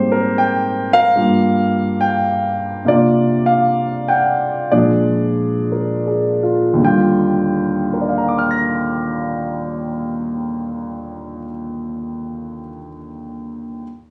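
A lone concert grand piano opens on a lush Abmaj9 chord in this short, relaxed solo jazz fragment cut from a longer piece. The tempo sits between 53 and 75 BPM in 4/4 with a gentle swung eighth-note feel in Eb major, and it slows during the opening passage up to 6.8 seconds. The harmony moves through Gm7, C9sus4 and Bb7 before settling on a rich Ebmaj9 at 6.8 seconds, where a second section begins. The piano's warm tone, deep bass and up-front placement carry the mood across a span from Eb2 to Bb6. Captured on a phone in the room, the sound has moderate studio reverb, a club-like ambience and compression, giving this brief piece a warm, relaxed character.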